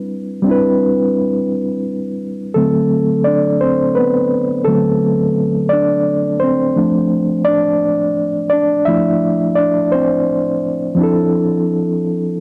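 A reedy, mellow electric piano carries this slow, sensual R&B fragment alone, sitting up front with a fast tremolo and played through its built-in speakers, ranging from D3 to E5. At 57 BPM in a straight 6/8 feel, it moves from Cmaj9 to D7 at 2.6 seconds and on to F6 at 6.8 seconds, stepping forward as a solo in the middle passage before the opening idea returns at 11.0 seconds. A moderate spring reverb and the soft grain of a home cassette recording give this short cut from a longer piece an intimate, lived-in feel.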